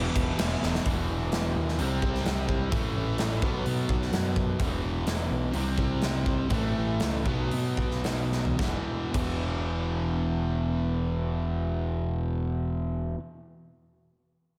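Menacing, heavy hard rock in E minor at 108-129 BPM, where up-front bright distorted electric guitar riffs alongside a brief double-tracked distorted guitar in the background at the very start, over a warm overdriven semi-hollow guitar with slapback echo, a growling overdriven picked bass and a big punchy acoustic drum kit with bright cymbals, with drum fills at 0.6 and 8.3 seconds as the tempo slows from 4.6 seconds before the drums stop at 9.3 seconds, all in a big arena sound with scoring-stage reverb, cut from a longer piece.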